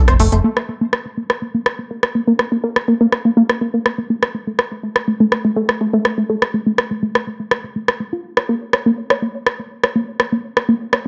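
Melodic techno at 123 BPM in a driving, dark mood, cut from a longer piece, where an up-front, detuned sawtooth synth plays tight, evolving arpeggios from A3 to Db5 with chorus, digital delay and a filter sweep from 0.4 to 11.1 seconds, over a layered, tape-warm electronic drum kit of smooth hi-hats and rim clicks, all in a moderate digital room reverb.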